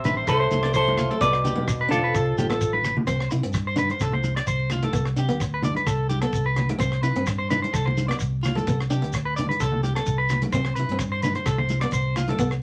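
A dark, hollow-bodied electric guitar carries a joyful highlife melody over a mellow bassoon second line with light vibrato, while a picked steel-string acoustic guitar with finger squeak, a bright, twangy, slightly broken-up electric guitar playing arpeggios, a round, punchy fingered bass, a tight funk drum kit, ringing congas and a grainy shekere fill out the swung groove. The melody guitar and bassoon drop out at 2.8 seconds as a drum fill leads into the second section at 3.1 seconds, where the band keeps cycling through its sunny chords. Vinyl crackle and a wet studio ambience colour this excerpt from a longer piece.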